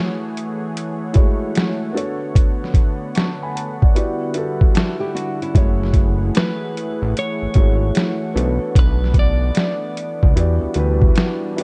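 A hazy, reflective lo-fi hip hop excerpt in F# minor at 75 BPM opens on a soft, felt-muted upright piano and a smooth, warbling analog pad with chorus, both filtered dull. From 0.4 seconds a muffled, overdriven sampler-style drum kit with a thumpy kick and gritty 12-bit texture sits up front, swinging over minor-ninth chords. A fingerpicked flamenco guitar with finger squeak and tape echo appears briefly, then a fat, detuned sawtooth bass with a filter pluck arrives at 5.6 seconds, followed by a dark, clean, picked electric guitar melody, all in a close, dry mix with a rolled-off top end.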